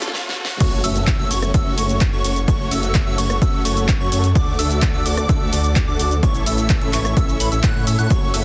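A punchy, overdriven electronic kick sits up front from 0.6 s, driving a festival progressive house drop at 128 BPM in F# minor with an anthemic, powerful mood, alongside a big-room kit with a huge snare, handclaps, hi-hat, shaker, rim click and crash cymbal that plays from the start and lands a fill just before the kick enters. Huge, lush supersaw chords with subtle chorus and delay carry the riff over a thick, detuned saw bass, while a bright, catchy plucky unison lead enters at 0.6 s with delayed arpeggios and all three pump against the sidechain. A dark, distant chamber string section holds sustained chords in the background, a very quiet riser and impact mark the drop through 2.5 s, and the chords move from F#m to D to A in a dense, heavily limited master with digital ambience.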